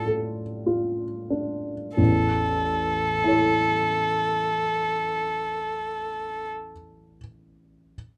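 This romantic classical duo for violin and baby grand piano, cut from a longer piece, has a serene, tender mood, moving slowly at 43-51 BPM in 3/4 with a rubato feel in A major. The single bowed violin carries the melody, centred on A4, with a rich, smooth and even tone, vibrato and a close, up-front presence. The piano accompanies from A1 to C#5 with an intimate, natural sound, short sustain and audible action noise. The opening pulls back in tempo over its first 2.0 seconds, settling from a Dm/A chord onto A, and the violin drops out at 6.5 seconds so the piano finishes alone by 8.0 seconds. A moderate small-room reverb and a dark, warm production give the duo a soft, close-knit glow.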